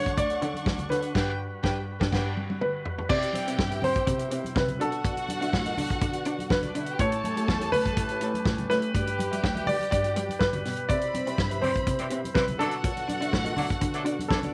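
Sultry, danceable disco at 123 BPM, where a present baby grand piano carries the melody with slapback echo over dark, lush bowed strings, a smooth bowed cello bass, a gritty overdriven tonewheel organ with lush chorus, a clean electric guitar with warbly pitch drift, a tight, mid-forward soul drum kit up front and background congas, with a band accent and drum fill before 3.1 seconds and clear, vintage horn stabs entering at 11.6 seconds in this cut from a longer piece.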